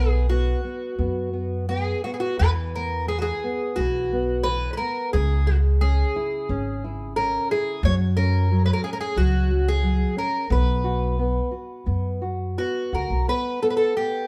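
A fingerpicked twelve-string acoustic guitar leads this fado-style ballad, its shimmering, octave-doubled melody sitting up front with the warm ring of fresh strings. Beneath it, a thumb-plucked nylon-string guitar supplies warm, classical accompaniment. A pizzicato upright bass adds a woody, dark, thumpy low end, also placed close, and drops out at 13.3 seconds while both guitars carry on to the close at 14.3 seconds. The rubato feel and the harmony moving from B5 through E5, C#m and F#5 back to B5 give the passage a longing, mournful character. The trio plays live together in a stone room whose moderate reverb lends the sound a resonant air, and the passage is cut from a longer piece.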